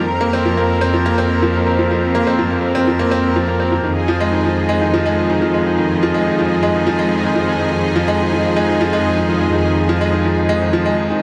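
This moving, melancholic piano and strings electronica opens with a brilliant, up-front concert grand piano riff carrying tape echo and audible action noise, set over a lush, airy pad of detuned sawtooth and square waves with chorus, and a distant, smooth cello section bowing a low F with vibrato and a touch of tube saturation. At 124 BPM in 4/4 and F minor, the harmony moves from Bbsus2/F to Fm7 at 3.8 seconds, the piano standing forward of the softer pad and cellos. Light reverb lends a small-room ambience to this fragment cut from a longer piece.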